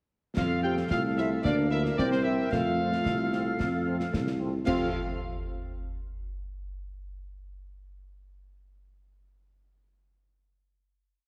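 A straight two-beat march pulse of marching snare over concert bass drum on the beat, with dark clash cymbals, drives this short, spirited and rousing military-style piece for wind band, where a bright trumpet section carries the tune doubled at the octave above a mellow, up-front tuba on the beats, while a warm woodwind section adds chords in the tune's rhythm, a euphonium with light vibrato plays a distant second line, French horns play after-beat chords in the background and a dark trombone section with a smooth top threads a counter-melody, the band sitting in a wet scoring-stage reverb yet squeezed into a heavily compressed, radio-like sound before closing on a held final chord at 4.7 seconds.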